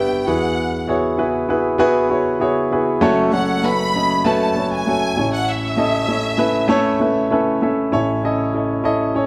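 A lush, vibrato-rich violin section sings an expressive melody over a polished, up-front baby grand piano from the start of this hopeful, warm pop fragment at 98 BPM, moving through Eadd9, F#m and A in a moderate large studio reverb before the violins drop out at 7.3 seconds and the piano carries on alone until 9.3 seconds.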